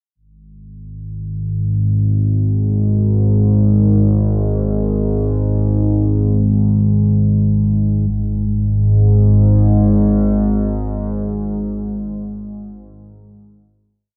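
A solo analog drone enters at 1.0 s with a slow attack, sitting low and up front, its evolving sawtooth, pulse-wave and triangle tones shaded by pulse-width modulation, ring modulation, chorus and delay. This short, complete ambient piece feels dark and cavernous, bathed in a wet cathedral reverb with a 5.8-second decay and a warm production. From 8.1 s the drone holds a sustained final note with a long release, ending at 12.4 s.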